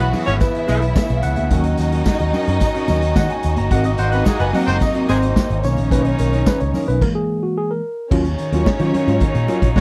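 Sultry and glamorous, this disco groove moves at 109 BPM in a straight 4/4, cut from a longer piece and set in C# dorian. A mellow, worn tine electric piano, lightly overdriven through a combo amp and slightly out of tune, carries a solo until 8.1 seconds, with a stop from 7.0 seconds. Underneath, an up-front picked electric bass with an envelope filter sits beside a vintage acoustic drum kit with a punchy kick, medium-tuned snare, dark cymbals and a pumping small-room sound. A lush, bowed string section plays a distant second line, while a muted, nasal French horn section holds sustained chords and a roomy horn section adds stabs until 5.2 seconds, returning at 9.8 seconds. A dark, clean fingered electric guitar stays in the background, high-tuned congas sit very quiet and dry, and a jingly tambourine plays until 6.9 seconds. The harmony moves through C#m7, D#m7, G#9 and Bmaj9 toward a rootless F#9/E, landing on Ebm7 at 8.1 seconds, all in a dry mix with little reverb.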